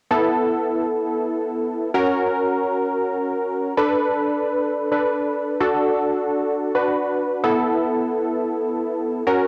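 Nostalgic and upbeat, this short pop fragment, cut from a longer piece, moves at 131 BPM in a straight 4/4 in A major. A single analog keyboard carries everything on its own from 0.1 to 9.5 seconds, sitting up front in a compact range from B3 to B4. Its round, detuned sawtooth tone has a fast attack and decaying notes, with a filter sweep and chorus adding shimmer, while a cassette tape effect gives it a worn, homespun character. The harmony passes through Asus2, F#, Bm7 and D before returning to Asus2 as a second section begins at 7.4 seconds. A moderate spring reverb and the intimate feel of a home cassette recording frame the sound.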